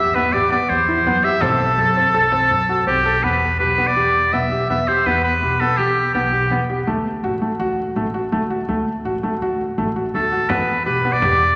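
A concert hall reverb wraps this pensive, hypnotic fragment of contemporary chamber music in 5/4 at 165 BPM in E minor, where a bright, lightly vibrato oboe sings the melody up front until 6.6 seconds and returns at 10.1 seconds over felt-muted upright piano arpeggios with audible action noise, a woody, thumpy pizzicato upright bass on gut strings, and a small, dry frame drum struck with hard hands that sits very quiet in the mix.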